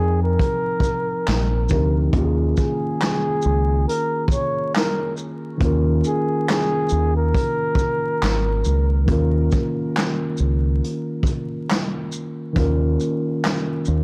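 Nostalgic and melancholic, this lo-fi hip hop excerpt moves at a relaxed 69 BPM with a swung sixteenth feel. A breathy, whispered flugelhorn sings an intimate jazz-style solo with vibrato and scooped notes until 9.1 seconds, over a mellow tine electric piano moving between F9sus4 and Eb9sus4, both softened by a low-pass filter. A deep, round dub bass with tube saturation sits prominently underneath, while a vintage brush kit from 0.4 seconds adds a punchy kick, snare, hi-hat, shaker and handclaps with a rolled-off top, all in a dry, gritty recording dusted with vinyl crackle.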